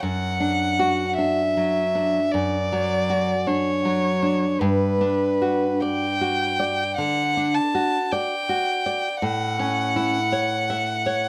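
A romantic duo for violin and classical guitar, this tender, warm fragment of a longer piece moves at a slow, rubato 48-54 BPM in 4/4 and D major, with the bowed violin singing the melody up front through vibrato, a soft attack and expressive portamento while the fingerpicked nylon-string guitar, deep and classical in tone, carries the accompaniment through D/F#, Gmaj7 and A, both captured close, detailed and dry across the full 11.3 seconds.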